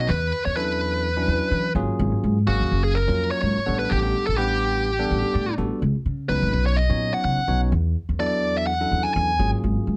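A funky, slick 4/4 groove at 126 BPM with a light sixteenth-note swing drives this jazz fusion excerpt. A woody, thumpy upright bass is plucked up front, and a bell-like, bright, clean tine electric piano comps through suspended thirteenth and ninth chords, adding a short fill at 5.1 seconds. An up-front, bluesy, overdriven lead guitar, picked with distortion and slapback echo, carries the melody until 9.5 seconds, all set in a dark production with light reverb.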